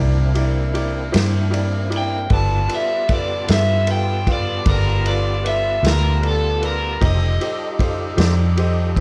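Swaggering and rollicking, this slow blues in 12/8 moves at 51 BPM over C9, G9 and F9 chords, cut from a longer piece and colored by light reverb and worn, warbling cassette tape pitch drift. A brilliant, woody upright piano plays accompaniment, while a fat tonewheel organ with key click, chorus vibrato and slow rotary speaker, along with a distant, tight horn section, hold sustained chords in the background. A dark, round muted electric bass with tube saturation sits up front, a vintage kit of punchy kick, medium-tuned snare and ride cymbal joins at 0.4 seconds, and at 2.0 seconds an overdriven, picked semi-hollow guitar takes the melody up front.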